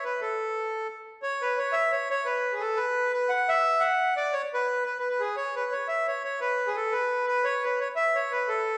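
Bright and lively, this short cut from a longer Celtic folk piece sets a solo accordion, reedy and clear with a single reed in dry tuning, up front in a straight 6/8 at 116 dotted-quarter beats per minute, its tune ranging from G#4 to F#5 within the wet bloom of a recital hall's 1.5-second reverb.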